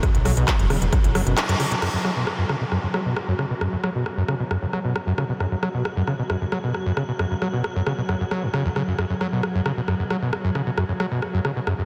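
A dreamy mix soaked in huge ambient reverb carries this driving, intense cut of peak-time techno, in which a squelchy, gritty, distorted acid bass riff sits up front with cassette-tape grit, tape echo and sidechain pumping. A punchy, layered electronic kick and a thick, menacing, detuned saw bass pulse only through the opening moments, while an up-front techno kit of smooth hi-hats, handclaps, rim clicks and crash cymbal runs throughout, with a swarming, granular drone phasing in the background. After a band accent at 1.4 seconds, a filter sweep runs across the acid bass from 1.8 seconds to the end.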